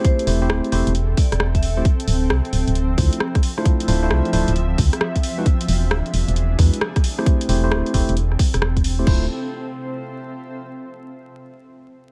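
Swung two-step UK garage rhythm at 133 BPM in D minor sets a bouncy, late-night mood, with an overdriven, tight electronic kick up front and a punchy analog drum machine adding crash, hi-hat and rim click, while a hollow, dark, organ-like FM bass enters at 0.3 seconds beneath bright, clean tine electric piano stabs under a filter sweep and delay, a metallic, ringing vibraphone melody with delay that plays only until 1.8 seconds, a very quiet, smooth sawtooth pad with chorus holding chords through Am7, Dm9 and E7, a cloudy, evolving granular pad with reverb and sidechain pumping that carries on to 10.8 seconds, and a layer of vinyl crackle over this excerpt from a longer piece.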